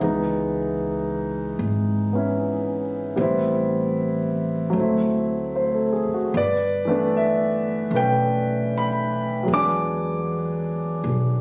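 Caught on a phone in the room and dressed with light studio reverb, this brief cut from a longer jazz ballad has a close, late-night intimacy. A concert grand piano sits up front, its tone warm and natural with deep bass, long sustain and audible action noise, carrying the accompaniment across a span from E3 to D6. Beneath it, a pizzicato upright bass with steel strings gives a woody, thumpy low end between G1 and E2, sitting a little further back. At 76 BPM in a swung 4/4, the harmony moves from C#m7 through Am9 and D9 to G69 at 6.3 seconds, then turns to E9 at 9.5 seconds. Both instruments play together from the first moment to the end at 11.4 seconds, keeping the mood unhurried and tender.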